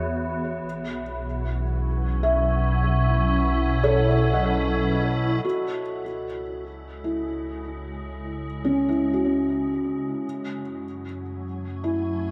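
Drenched in a moderate spring reverb and heavy echo, this short ambient passage, cut from a longer piece, feels peaceful and serene as it drifts in a gentle three-beat pulse. An evolving wavetable pad holds sustained chords throughout, its bright, morphing tone shaped by ring modulation, ensemble chorus and its own reverb. A filter sweep moves across it during the first 5.4 seconds, and it fades in from that point. Up front beside it, a felt-muted upright piano plays soft, intimate arpeggios whose thick felt and audible action noise give a dark, mellow character, with tape echo trailing each note. Underneath, a round analog bass sustains deep, wave-folded tones that fade in from 5.4 seconds. The harmony opens on Eadd9 and B7sus4, then settles through C#m and F#m7, and the passage stays hushed and spacious throughout.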